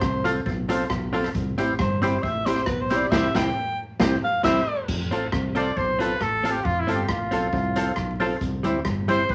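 A bouncy, upbeat ska groove at 136 BPM with a light swing carries a short cut from a longer piece, where a breathy, whispered alto saxophone sings the melody over round, punchy fingered bass, a street-band drum kit with a boomy kick and dark cymbals, hollow-body jazz guitar, percussive tonewheel organ stabs through a slow rotary speaker and a very quiet jingly tambourine, before a clear trumpet takes over the lead at 5.6 seconds, all set in a wet reverb under vinyl crackle.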